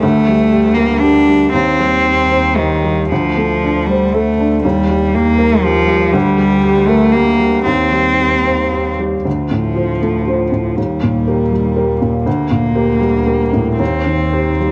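A home cassette recording with light reverb carries this melancholic, longing neoclassical fragment in C dorian, a rubato 3/4 drifting between 111 and 122 BPM, where an intimate felt-muted upright piano with audible action noise and a boxy tone plays the accompaniment up front, a smooth bowed cello with vibrato sings the second line close beside it, and a bowed double bass adds expressive portamento low beneath, all three sounding from 0.0 to 14.7 seconds as the chords circle from Gmadd9/D through Cm/Eb, Dm7 and Eb.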